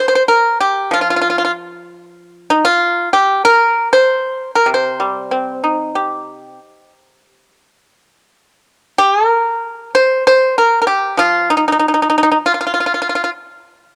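A solo pipa sits up front in this short cut from a longer Chinese traditional piece, its plucked strings bright, dry and percussive under fingerpicks. The mood is longing and contemplative, with the playing moving in a free, rubato feel around a nominal 95 BPM in 4/4. Set in the C yu mode with tuning slightly below standard pitch, the pipa ranges from C3 to C5 and plays alone from 0.0 to 13.3 seconds. The music falls into two sections, with the second beginning at 8.6 seconds. The sound carries the texture of a home cassette recording, with a small room's ambience and a moderate spring reverb lending a gentle halo around the strings.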